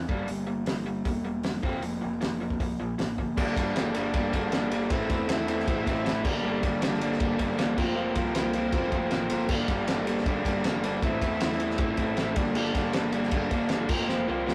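A straight 4/4 pulse at 157 BPM drives this moody, cool indie rock excerpt in G dorian, with a cloth-damped, thuddy drum kit setting the pace from 0.1 seconds with a fat snare, tight kick, hi-hat, ride and dark crash cymbals, played up front in a small room with a rolled-off top. From the opening, a bright, compressed overdriven electric guitar picks out a riff up front, underpinned by a growly fuzz bass fingered low in its range. After a drum fill at 3.2 seconds, a second picked guitar enters at 3.4 seconds, its slightly broken-up, twangy lo-fi tone coming through a small old amp as it plays its own riff higher up. At the same moment, a reedy vintage combo organ, overdriven and very quiet, holds sustained chords high above the band. The harmony moves from Gm and Fsus4 into a cycle of Gmadd9, Am and Fsus4, and the rough rehearsal-room sound carries light reverb and saturation before a final drum fill closes out the passage.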